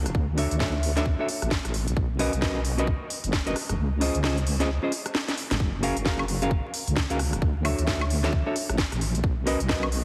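A heavily compressed, radio-like sound with vinyl crackle and light reverb frames this bouncy, soulful two-step garage excerpt, swung on the sixteenths. Up front, a deep, wobbling, saturated bass with chorus sits beside a garage kit of cracking snare, crisp hi-hats, rim clicks and woodblock, while a tight, tape-warm electronic kick supports them. A clean, dark hollow-body electric guitar plays fingered stabs over major-ninth chords through spring reverb and dub echo, while the kick drops out from 3.8 to 5.6 seconds and a drum fill arrives at 5.3 seconds.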